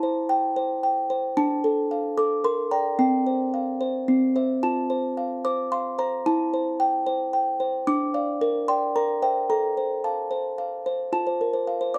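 A delicate, tinkling music box plays alone from the first moment, its mellow, slightly out-of-tune plucked tones sitting up front with light reverb in a dark production, carrying a tender, innocent classical lullaby in 3/4 across a range of C4 to D6 as the chords move from C/E through Dm and Gm/Bb to settle on F at 11.1 seconds, in a passage cut from a longer piece.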